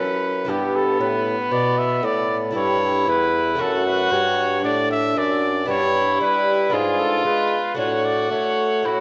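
Grave and flowing, this baroque-style sonata movement in D major moves at a slow 58 BPM in 3/4 with a rubato feel, heard as a 9.0-second portion of a longer piece. A clear, smooth-topped trumpet carries the melody over a dark, nasal gut-string violin playing the second line. A mellow bassoon with light vibrato anchors the bass, and a bright, delicate fingerpicked lute with doubled nylon strings provides the continuo accompaniment. The harmony passes from Em/G through A7/G, D/F#, G and G#dim7 before settling on D/A, all bathed in the lush reverb of a recital hall.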